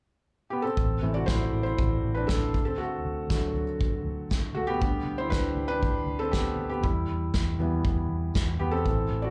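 Heard through a club PA with light reverb, this bittersweet yet driving piano-driven pop excerpt opens with a soft, felt-muted upright piano at 0.5 seconds, its mellow tone and audible action noise up front, before a round, foam-muted vintage electric bass and a roomy acoustic drum kit of tight kick and bundle-stick snare join at 0.8 seconds beneath a felt piano solo over chords moving from Am through D and G/D to Em.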